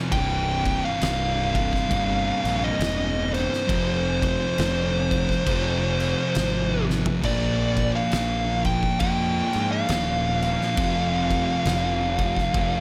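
Two thick fuzz guitars open this ominous, sludgy stoner and doom metal excerpt at 68 BPM in a swung 4/4, one dark and very quiet and the other distorted and sitting in the background, both picking low riffs over C5, Fm, Bb5 and F5, tuned to A4 = 438 Hz. A compressed, up-front fuzz lead guitar with slapback echo carries a high melody, while a growly, overdriven fingered bass and an oversized low-tuned acoustic kit with a fat snare and punchy kick join almost at once. The drums ring in a bright, pumping stone room and play a fill at 6.8 seconds, all under a light reverb.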